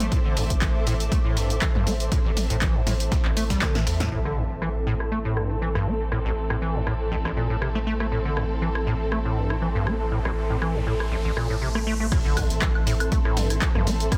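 Acid house at 120 BPM in A minor, gritty and driving, where a squelchy, resonant acid bass riff and a thick, saturated sub bass pump under lush bowed string chords, a blurred granular pad, a punchy analog drum machine with handclaps, toms, woodblock and shaker, an up-front electronic kick and a very quiet dusty sampler-style kit, with the kick and sampler kit dropping out during a drum fill that begins at 3.6 seconds, a filter sweep on the strings and a riser building toward a drop at 12.1 seconds, where an impact lands and both return.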